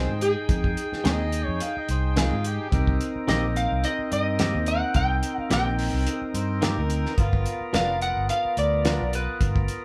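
Straight-eighth soul blues at 108 BPM in C minor, smoky and mournful, in which a dark, slightly broken-up electric slide guitar played with fingerpicks carries the melody over a reedy, key-clicking tonewheel organ through an overdriven, slow rotary speaker, twangy, compressed stabs from a direct-recorded clean guitar, a round, amped fingered bass and an up-front, cloth-damped thuddy drum kit with a fat snare and tight kick, while a gritty overdriven harmonica with tongue slaps and scooped notes adds a jazz-style second line at 1.1 and 6.4 seconds, all captured live in one room with moderate ambience and moving from Fm7 to Cm7 to G7#9 in this short cut from a longer piece.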